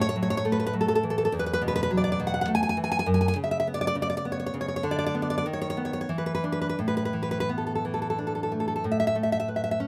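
Nostalgic and tender, this short excerpt from a longer romantic piece for solo classical guitar sits in A major and moves in 3/4 with a rubato feel, the tempo drifting between 84 and 105 BPM. A single nylon-string guitar carries everything, fingerpicked with a warm, full-bodied, deep classical tone and placed up front in the sound, reaching from E2 up to G#5. The harmony travels from A5 through E5 and F#5, then colours the phrase with Bm/D, B/D# and Bmadd11/E before settling back on A5 at 6.8 seconds. A new section begins at 8.8 seconds, just before the clip ends at 9.9 seconds. Light reverb gives the intimate performance a gentle sense of space.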